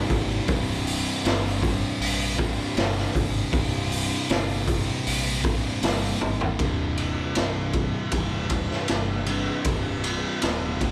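A band playing live in one room comes through with light reverb in this short cut from a longer stoner and doom metal piece, hypnotic and ominous at a slow 78 BPM in straight 4/4, in C minor and tuned to A4 = 435 Hz. Up front, a thick, dark, double-tracked fuzz guitar picks a low riff between C2 and C3, outlining a C5 power chord before moving to C minor at 6.6 seconds. Beneath it, a fingered electric bass with overdrive sounds bright, growly and punchy, sitting between C1 and Bb1. The raw garage drum kit is acoustic and gritty, with a boomy kick, a medium-tuned snare, hi-hat, ride cymbal and toms, a saturated mid-forward character and a rolled-off top. A drum fill from 6.2 to 6.6 seconds leads into the new passage, and all three parts play on to the end at 10.9 seconds.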